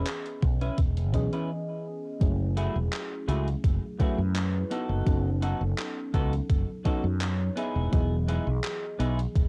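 This nostalgic, woozy vaporwave fragment at 84 BPM in F# dorian, with a lightly swung 4/4 feel, opens on a soft FM electric piano with phaser and subtle chorus, which carries the chords from C#m7 through F#m9 and B7/F# to Emaj7 beneath a clean semi-hollow guitar riff steeped in lush chorus and analog delay. From 0.1 s a gated 80s drum machine adds handclaps and hi-hat through gated reverb and overdrive, and at 0.4 s a thumpy, overdriven electronic kick and a round, up-front fretless bass join in. A stop from 1.5 to 2.2 s breaks up the groove of this dry home cassette recording, whose tape haze colors keys, guitar and drums.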